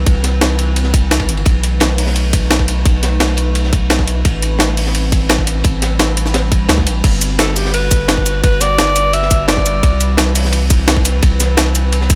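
A clear, soft-attacked alto saxophone steps in for a brief jazz-style solo between 7.4 and 10.1 seconds, its line carried on a tape echo above an uplifting, dreamy stretch of liquid drum and bass at 172 BPM in straight 4/4. Beneath it, a glassy FM pad with a vintage, warbling character holds slow-blooming sustained chords through ensemble chorus and its own reverb, moving from Cmaj7 through B7, Am9 and Gmaj7 before returning to Cmaj7. A round sine sub bass sits deep and up front, anchoring the harmony with a fast attack and long sustain. The drums stack three layers: a tight, produced electronic kick re-recorded in a small room, a gritty, pitched-up jungle sampler-style kit with cabasa, crash, hi-hat and a medium-tuned snare re-recorded in a large room, and a darker, saturated breakbeat kit whose high-tuned snare, hats, ride and dusky cymbals are high-passed and rolled off at the top. Light small-room ambience frames this short cut from a longer piece.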